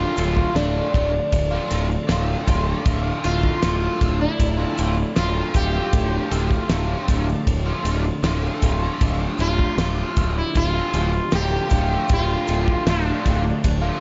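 A buzzing, shimmering sitar melody trailed by tape echo opens this trippy, hypnotic psychedelic rock excerpt, joined at once by a biting, double-tracked overdriven guitar riff through flanger, a growly fuzz bass held up front, and a very quiet, piping tonewheel organ with key click and slow rotary sustaining chords over a single unchanging chord. From 0.2 seconds a damped 70s drum kit with a fat snare, tight kick and dark ride cymbal sits in the background alongside a grainy, distant egg shaker. The dreamy mix is soaked in lush hall reverb, with a softened top end.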